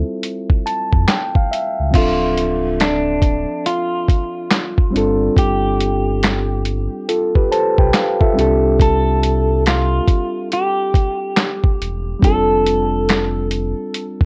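Worn, warbling cassette tape with pitch drift and a small room's reverb wraps this melancholic, hazy lo-fi hip hop excerpt in D minor, swung at 70 BPM. A reedy, bright electric piano carries the chords through a low-pass filter, moving from a rootless Dm11 through Dm7, G9sus4 and C69 to F6, with fills at 0.2 and 7.1 seconds. Alongside it sit a deep sine sub bass and a compressed, pitched-down sampler kit with a thumpy kick, medium-tuned snare, hi-hat, handclaps and crash, while from 2.0 seconds a clean, fingered electric guitar adds a filtered melody with analog delay.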